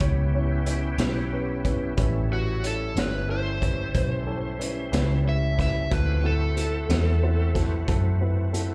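Rollicking and swaggering, this slow 12/8 blues excerpt, heard live through a club PA with room reverb, rides on a round, foam-muted electric bass up front and a saturated, punchy garage drum kit of kick, snare and hi-hat, while a gritty tonewheel organ holds thick chords through a slow rotary speaker, a dark, mellow baby grand piano accompanies with slapback echo, and an overdriven slide guitar played with fingerpicks enters at 2.3 seconds and plays until 7.5 seconds as the harmony moves from A9 to D9.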